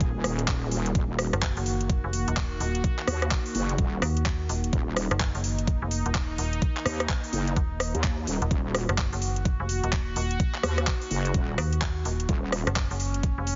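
A heavy, saturated wobble bass drives this aggressive, bouncy bass house excerpt at 127 BPM in Eb minor, its detuned square-and-sine tone pumping against a knocking, tape-warm electronic kick and a garage kit of handclaps, metallic hats and rim clicks swung on the 16ths, while a digital FM bass with a mellow metallic bite joins at 1.3 s and a bright, evolving sawtooth pad holds a sustained Ebm chord underneath, all squeezed into a dry, heavily compressed radio-style sound.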